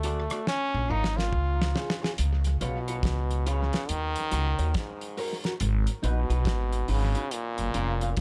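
A bright, up-front trombone with light vibrato carries the melody through this laid-back roots reggae excerpt at 70 BPM, with a lilting 16th-note swing, and takes a solo from 0.0 to 2.2 seconds while the drums play a fill starting at 0.5 seconds. Beneath it, a woody, thumpy pizzicato upright bass on gut strings sits prominently alongside a cloth-damped kit with a fat snare, tight kick, rim click and hi-hat, its top rolled off. In the background, a compressed, slightly broken-up electric guitar with phaser and tape echo colours the chords as they move from A#m and C# to C#7, D#m7, G#m7 and F#maj7, with tape echo also on the trombone and drums in a small-room setting.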